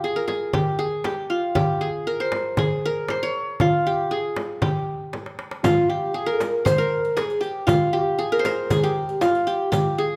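A bright-edged, plectrum-plucked qanun sits up front in this melancholic, soulful Arabic maqam ensemble excerpt, backed by a close, dry frame drum and a clay-shelled darbuka, with a drum fill at 5.1 seconds leading into the entrance of a soft, round sine lead with chorus, phaser and vibrato and a dark-jingled riq, both in the background, all in light reverb.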